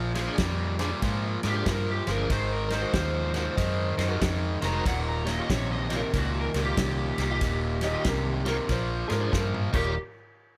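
A bright, overdriven stack guitar riff leads this laid-back, swaggering electric blues shuffle at 94 BPM in Eb mixolydian, over a dark, round, foam-muted fingered bass, a natural country drum kit with a punchy kick, and a shouting tonewheel organ with slow rotary speaker and chorus vibrato in the background, while a picked lead guitar through a small cranked amp enters at 1.5 seconds, a woody, slightly detuned upright piano joins at 7.8 seconds, and a drum fill closes the cut from 9.3 seconds in a small room ambience.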